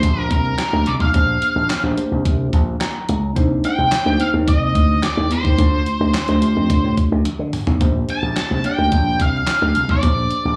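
Heard through a club PA with light room reverb, this feel-good, smooth early-eighties boogie funk excerpt in Bb major at 108 BPM sets a dark, fuzzy octave-fuzz lead guitar with slapback echo and plate reverb over a worn, slightly out-of-tune tine electric piano that adds a fill at 2.3 seconds, a growly, punchy slap bass through an envelope filter, and a crisp 8-bit drum machine with thumpy kick, fat snare, handclaps and toms that rolls into a fill at 7.3 seconds, all moving through Bb69, Cm9 and Dm7.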